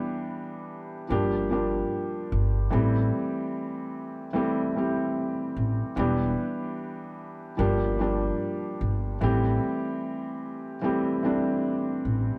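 A felt-muted upright piano opens this hazy, nostalgic lo-fi hip hop excerpt, its soft, mellow chords carrying audible action noise through a cassette-tape, low-pass-filtered haze. At 1.1 s a woody, thumpy pizzicato upright bass with gut strings joins up front, while the pair cycle through Em7, Gm7 and Am7 at 74 BPM with a sixteenth-note swing in A minor. Light reverb keeps the intimate sound close.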